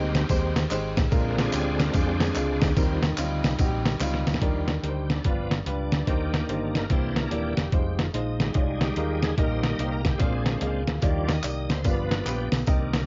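Uptempo gospel in Eb major at 145 BPM, swung in 4/4, this jubilant yet reverent passage is cut from a longer piece and carries the hazy, muffled sheen of a home cassette recording with light reverb. A bright, shouting tonewheel organ takes the lead throughout, its full sustained chords colored by slow rotary speaker and chorus vibrato, while an intimate grand piano with audible action noise fills in the accompaniment. Underneath, a dark, round fingered electric bass gives punch, and an up-front, sampler-style trip hop drum kit brings a gritty, pitched-down groove with a thumpy kick, a medium-tuned snare, hi-hat and ride cymbal. Tambourine and group handclaps sit in the background from 0.1 to 4.3 seconds, then return at 11.0 seconds. A drum fill at 4.0 seconds ushers in the second section, where the harmony moves from Ebmaj7 through G7, C7 and Fm7 before landing back on Ebmaj7.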